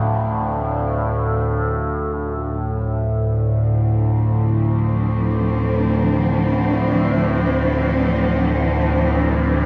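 From the outset, a dark, barely audible detuned synth bell traces eerie, inharmonic arpeggios until 2.2 seconds over a Dm(add9) chord, while an up-front, overtone-sweeping drone with moving overtones, chorus and its own reverb holds low beneath a lush, vibrato-rich cello section sustaining dark chords and a very quiet bronze singing bowl rings with slow, meditative beating, all bathed in huge reverb in this ominous, vast dark ambient excerpt in free time.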